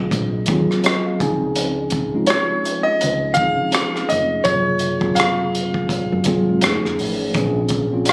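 A bright concert grand piano carries the melody up front in this brief cut from a longer R&B and neo-soul piece, its brilliant, smooth tone sitting high between Db5 and F5 with plate reverb around it. Alongside it, a mellow tine electric piano supplies clean, up-front accompaniment across a broad range, also bathed in plate reverb, and adds a fill between 0.5 and 1.6 seconds. A woody fretless electric bass enters at 0.1 seconds with a dark, round, hollow-bodied sound, arriving together with a crunchy breakbeat drum kit whose gritty, saturated hi-hat, tight kick and rim click sit forward with a rolled-off top. The groove moves at a relaxed 83 BPM in 4/4 with a light swing on the sixteenths, in Db major, drifting through lush chords from Ab13 and Dbmaj9 to Gbmaj9#11, F7alt and Bbm9. Captured on a phone in the room with club reverb and compression, the whole thing feels relaxed and sensual.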